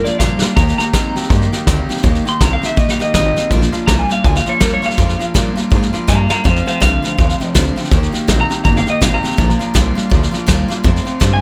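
A dry sound frames this upbeat, rowdy rockabilly cut from a longer piece, swinging at 163 BPM in Bb major with a vintage brush kit up front, its fat snare and punchy kick rolled off on top, while a woody, thumpy pizzicato upright bass with gut strings anchors the low end. A twangy, slightly broken-up electric guitar through a small old amp carries a clean solo melody with tape echo, as a second electric guitar through a small old amp plays a low riff and a full-bodied picked dreadnought acoustic guitar picks out accompaniment, its finger squeaks audible. Drum fills kick off the passage at 0.2 seconds and return at 6.1 seconds, just before the harmony moves to F.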